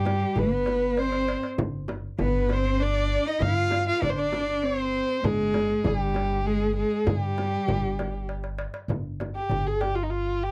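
Opening together, a dark, bowed violin with expressive vibrato and portamento carries the melody over a clear, focused bowed cello line and a woody, thumpy pizzicato upright bass on gut strings, while a compressed, saturated clay-shell darbuka sits in the background beside a small, bright frame drum played with soft hands, in this hypnotic, soulful Arabic maqam ensemble excerpt in G maqam hijaz at 98 BPM in 3/4, recorded dry and close in a 1970s-style studio, with drum fills at 1.0 seconds and 8.3 seconds as the cello stops, and a new section beginning at 8.9 seconds.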